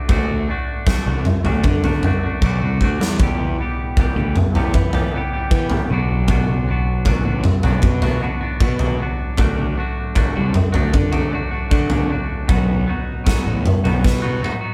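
A bright, twangy clean electric guitar opens this brooding, angsty alternative rock excerpt with spring-reverbed arpeggios, joined almost at once by a fuzz-drenched, overdriven picked bass and a big, natural-sounding rock kit with a punchy kick and medium-tuned snare placed up front. The band plays live together in one room under light reverb, moving through D, Em, Bm and back to D before landing on B, with drum fills at 2.4 seconds and again at 14.1 seconds.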